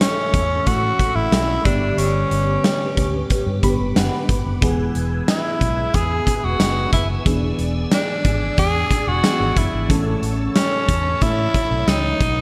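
Bright, glossy 1980s-style digital production bathed in lush hall reverb frames this nostalgic pop excerpt at 91 BPM, where a raspy, gritty tenor saxophone with light vibrato and scooped notes carries the melody up front over a big rock drum kit with gated reverb and a punchy kick, a round, foam-muted fingered electric bass entering at 0.3 s, a dreamy chorused FM electric piano with a soft pad layer that plays a fill at 3.3 s, and a swirling, warbling phased string machine sustaining chords in the background as the harmony moves from A through G and E to E7 and back to A.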